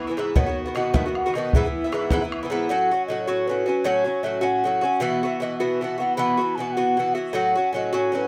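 A hollow, wooden baroque flute with vibrato carries the tongued melody from the first moment, sounding pure and distant above an up-front Irish bouzouki whose picked double strings ring metallic and mellow. This cheerful, rollicking Celtic jig moves at 103 BPM in 6/8, with an open, boomy bodhran in a live room joining at 0.2 seconds and dropping out by 2.4 seconds, while the harmony moves from B and E into F#m and Bsus4. Light reverb and close, detailed microphones frame this short cut from a longer piece.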